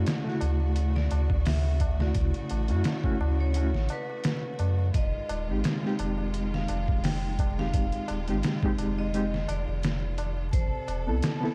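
A reedy, slightly out-of-tune electric piano with fast tremolo opens this dark, cinematic trip hop fragment alongside lush bowed strings and a round, deep dub sub bass, moving from Dmaj7 to Fm7 over a lightly swung groove. Gritty, overdriven sampler drums with a thumpy kick sit up front, while a high-tuned, dry tabla stays in the background. From 1.0 seconds a metallic, ringing vibraphone carries the melody through dub echo, all wrapped in a small room with vinyl crackle.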